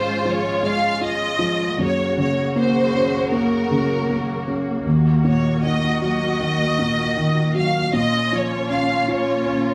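A tender, hopeful pop passage opens with a violin section, grand piano and string section all sounding together from the first moment, settled into a straight 4/4 pulse at an unhurried pace. The violin section carries the melody in its upper register, its bowed lines lush and expressive with vibrato, at once up front and touched with a distant, ensemble glow. Beneath it, the concert grand piano supplies the accompaniment, its deep bass and short sustain giving the harmony a clear, present footing. The string section holds sustained chords underneath, softly attacked and gliding with portamento, the quietest layer in the blend. The harmony moves from Db over Ab to Gb, then to Ebm around 4.9 seconds and Bbm at 7.9 seconds, all within one continuous section. A wet reverb wraps the players as if performing live in one room, and the fragment, cut from a longer piece, runs just under 10 seconds.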